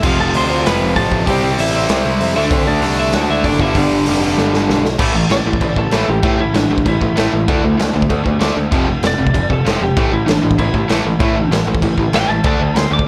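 A fast, straight 4/4 punk rock drive at 193 BPM in A minor opens in half time, with a raw garage drum kit up front, its boomy kick, medium-tuned snare, hi-hat and crash gritty and saturated in a pumping small room, before a drum fill at 4.4 seconds pulls the band out of half time at 5.0 seconds. Beneath it, a growly, overdriven picked bass anchors the low end while two bright riff guitars, one a tight distorted part and the other an overdriven semi-hollow, sit in the background, pushing angry chords from F, C, D and G into A5 and D5 power chords. Over the top, a dark, compressed, slightly broken-up lead guitar with delay carries the melody and launches into a solo from 5.0 seconds in this raw, lightly reverberant cut from a longer piece.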